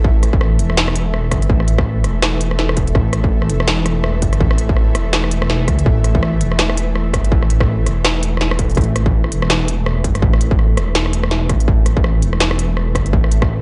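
A half-time drum and bass groove at 165 BPM in 4/4 drives this cinematic, heavy piece, with its 16ths swung at 58% and tuning set to A4 = 439 Hz. A distorted electronic kick starts at once, and an industrial kit joins at 0.2 s, placing a clanging snare, rim clicks and crisp hi-hats up front; both drum parts have a tape-warm tone from being re-recorded in a large room. Beneath them, a deep, rumbling bass of detuned unison sawtooth and sine layers beats with tube saturation, sitting forward in the mix across the whole run. Above, a tense, nasal, string-like drone sustains an A5 chord from the opening moment, its bright detuned sawtooths and noise layer swelling in with a slow attack and vibrato, bathed in its own reverb and pumping against the sidechain. The overall sound is dry and gritty with a hardware edge, capped at 10.4 kHz, and this single section ends at 13.6 s as a cut from a longer track.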